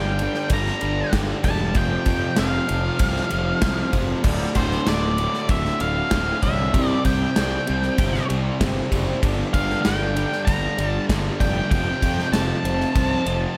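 Swaggering and brooding, this classic rock passage cut from a longer piece sets a picked octave-fuzz lead guitar melody over a bright, double-tracked cranked stack guitar riff with spring reverb and slapback echo, a growly, punchy fuzz-fingered electric bass, and a tight, up-front gated 80s drum kit with bright cymbals entering at 0.2 seconds, all set in a lush hall with a big arena sound as the chords move from Gm through Fsus2, Dm and C5 before returning to Gm and Fadd9.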